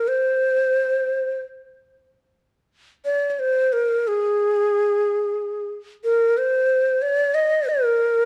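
This Arabic recording moves in free time, unmeasured, as a single breathy ney carries the whole excerpt alone from 0.0 to 8.3 seconds. The end-blown reed cane sits close-miked and up front, its crisp attack giving shape to each note while vibrato colors its warm tone. The line stays in a compact register between Ab4 and Eb5, tuned to A4 = 440 Hz. A brief opening passage gives way to a second section at 2.1 seconds that runs to the close of this fragment of a longer piece. Light reverb and a dark, warm production surround the instrument, lending the solo a warm, festive mood.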